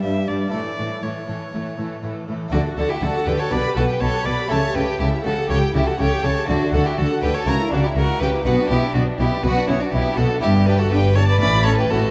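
A brilliant, lively baroque-style concerto movement with solo episodes, cut from a longer piece, in which a smooth, even solo violin carries the melody alongside a chamber violin section bowing sul tasto with a soft attack. A focused studio violin section holds a second line, while a dry, close-miked harpsichord and a lush, distant viola section sit in the background, and a chamber cello section anchors the bass, joined at 2.5 s by an expressive double bass section. The production is dark and warm, set in a moderate scoring-stage reverb, with harmony moving from G and A toward D, B minor and E minor before closing on A.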